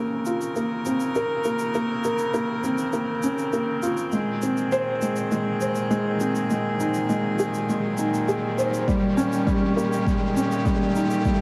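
Hypnotic and cinematic, this piano and strings electronica excerpt sits at 101 BPM in a straight 4/4, built as one long build-up in Bb dorian. A felt-muted upright piano carries the riff, its mellow, intimate tone marked by audible action noise and short sustain, with tape echo trailing behind it. A string quartet holds sustained chords beneath, one player per line, with a nasal, gut-string period character, light vibrato and a sidechain pumping effect. A brushy shaker ticks along from 0.3 seconds, an electronic riser creeps in from 3.3 seconds, and a deep, tape-toned electronic kick drum arrives at 8.9 seconds. The harmony moves from Bbmadd9 to Ab/Bb and then Eb7/Bb, all wrapped in a dark production with a lush hall reverb.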